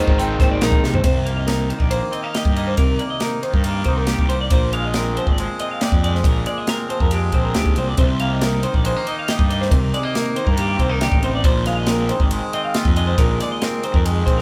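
The recording has light reverb and the feel of a band playing live in one room, with a crisp, airy, polished acoustic drum kit sitting up front. This wistful, intricate stretch of math rock and midwest emo, cut from a longer piece, moves at 138 BPM in a straight 4/4. A double-tracked overdriven electric guitar riff sounds only until 1.1 s, and a drum fill at 0.8 s carries the band into the main section. Through the whole passage, a clean, fingered twangy electric guitar plays warm accompaniment bathed in spring reverb, while a bright, compressed twelve-string electric guitar picks arpeggios in a high register. Underneath, a fuzz-drenched fingered electric bass with overdrive holds the low end, and the drums add a punchy kick, a medium-tuned snare, hi-hat, ride cymbal and toms. The harmony opens on Abmaj9, then moves through Cm7, Bb13 and Cm7 before settling on Bb9sus4.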